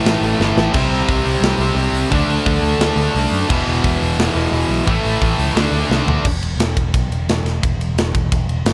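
A tight, saturated metal drum kit drives this heavy, relentless heavy metal excerpt at 174 BPM in 4/4, its medium-tuned snare and tight kick sitting up front in a big room sound. For the first 6.2 seconds the kit plays in half time, with fills at 0.4 and 5.9 seconds, while three distorted guitars grind out a riff in E minor, moving through power chords on A, C, D and E. One tight guitar rings bright and up front, a second sits in the background, and a double-tracked, overdriven guitar adds further weight behind them. A picked electric bass with a growly, punchy tone anchors the low end and carries on with the drums after the guitars stop around 6.3 seconds, closing out a short second section. Studio reverb gives the whole performance a roomy depth.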